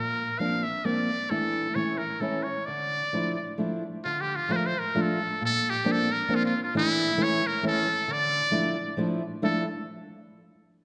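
A wet concert hall reverb with a decay of 1.9 seconds surrounds this dark, warm production, a short cut from a longer musette waltz in D minor at 133 BPM in 3/4. The mood is bittersweet and whirling, carried by a straight feel that keeps the dance turning. Up front, a trumpet with a metal mute sings the melody between E4 and F5, its tone brilliant yet buzzy and thin, shaded with light vibrato and a jazz-style phrasing that gives it the presence of a soloist. Beside it, a fingerpicked steel-string acoustic guitar supplies the accompaniment from Bb2 to F4, its concert voicing dark-hued, with an audible finger squeak adding close detail. The harmony circles through Bbadd9, Asus4, A and Dmadd9, settling on Dm at 4.0 seconds before the cycle returns. Both instruments play together from the start until just under 10 seconds, when the passage breaks off.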